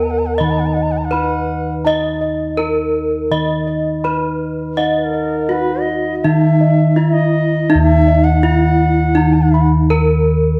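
The melody on a bronze metallophone leads this stately, shimmering Javanese gamelan excerpt: struck with a horn mallet, its paired tuning produces shimmering beats in a dark, smooth, ringing tone placed up front. A bright, reedy bansuri carries a second line in a straight, tongued, close-miked tone with an airy bamboo edge, and it drops out at 9.7 seconds. Beneath them, a second metallophone plays a mellow, soft accompaniment with padded disc mallets. Bossed gongs supply a round, beating bass, prominent in the mix, while another set of bossed gongs plays arpeggios further in the background. A wet recital-hall reverb surrounds the ensemble, and the passage is cut from a longer piece, ending at 10.6 seconds.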